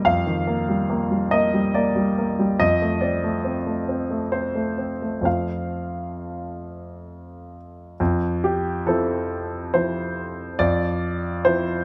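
This neoclassical minimalist piano piece, cut from a longer work, feels hopeful and peaceful, unfolding in a gently flexible three-beat pulse. A lone concert grand with a worn, present tone, deep bass and short sustain sits up front in a dry, close sound, moving from Ebmaj7/F to F by 2.6 seconds. At 8.0 seconds a new passage settles onto Fmaj7, continuing until the fragment ends at 11.8 seconds.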